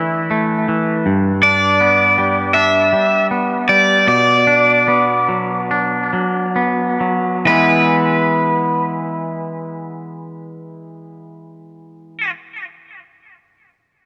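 Rock with a melancholic, brooding mood, in 4/4 at 65-82 BPM and tuned to A4 = 436 Hz, in which a bright, crunchy overdriven guitar carries the melody up front over clean, twangy arpeggios from a second electric guitar, both treated with tape echo inside a moderate plate reverb, while the tempo slows from 1.1 to 7.5 seconds through Dsus2, G and Bm before the harmony shifts to E in a fragment cut from a longer piece.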